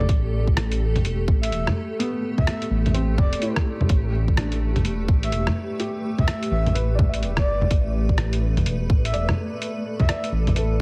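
Swung sixteenths at 126 BPM in 4/4 drive this melancholic, ghostly future garage fragment, where a tight, up-front electronic kick and a muffled, pitched-down sampler-style kit of bongos, hi-hat and rim click sit under a deep, rumbling detuned saw bass, a blurred granular cloud pad and a soft felt-muted upright piano with tape echo, those three pumping to the sidechain, while a breathy flute-like synth lead with subtle chorus, vibrato and tape echo carries the melody over an Am7 that shifts to G at 3.9 seconds, heard inside a heavily compressed, radio-like digital ambience.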